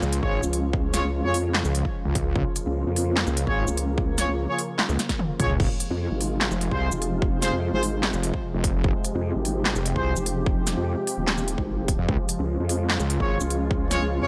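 Menacing and chaotic, this heavy wobble dubstep excerpt moves at 148 BPM in 4/4 with a half-time feel, cut from a longer piece. Two wobble basses dominate up front: one heavy, detuned and saturated with chorus and overdrive, the other a nasal, resonant vowel-sweep bass shaped by a formant filter, both compressed and sustained in the low register. A punchy, overdriven electronic kick and a big-room dance kit with crisp hats, a punchy snare, handclaps, shaker, toms and crash cymbal drive the groove, with a drum fill from 4.8 to 5.6 seconds. Beneath them, a lush, bright supersaw pad holds sustained chords through a low-pass filter and sidechain pumping, moving from Db to F minor at 5.6 seconds and back to Db at 12.1 seconds. A clear, close-miked brass section with light vibrato fires classical-style stabs through tape echo, dropping out at 10.1 seconds before returning at 13.2 seconds. Digital ambience surrounds the mix.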